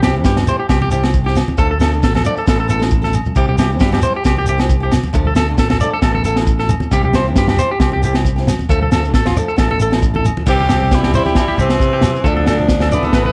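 Sunny and danceable, this swung highlife guitar band excerpt rides on a crunchy, saturated breakbeat drum kit with a punchy kick and a drum fill at 3.0 seconds, a bright picked electric bass, twangy, slightly broken-up electric guitar arpeggios with tape echo, a fingerpicked flamenco guitar with finger squeaks set back in the mix, low-tuned congas, grainy shekere and ringing agogo bells, before a raspy tenor saxophone melody and a distant alto saxophone second line enter at 10.5 seconds, all in a small room.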